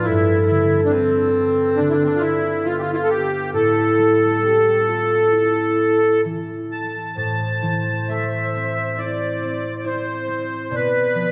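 Bathed in a long, wet church reverb, this short cut from a longer piece has a spacious, hallowed sound. It is a Celtic slow air, mournful and full of longing, moving with a free, rubato feel in four. A reedy, sweet accordion carries the melody up front, its dark, smooth tone colored by a light tremolo tuning. Beneath it a mellow wooden baroque flute plays a second line, pure-toned and tongued with vibrato, while a fingerpicked concert harp supplies a bright, ringing acoustic accompaniment. All three play throughout the 11.3 seconds, and the harmony moves from Gadd9 to Am7 at 3.5 seconds before a new passage at 7.2 seconds settles on Am and closes on Bdim.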